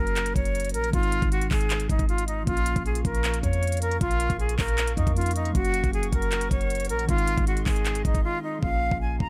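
An airy, vibrato-laden concert flute carries the melody up front through a digital delay in this menacing, dark trap excerpt at 156 BPM with a half-time feel in Bb minor. A mellow tine electric piano and a deep, boomy sine 808 bass sit beneath it, while an overdriven trap kit with a knocking kick, crisp hi-hats and handclaps drives the groove, pausing for a brief break at 8.2 seconds before the hi-hats fall silent from 8.6 seconds. A detuned, lo-fi pad with chorus and its own reverb drifts in the background from 2.9 seconds over a Gb, Ab and Bb minor progression, in an otherwise dry mix.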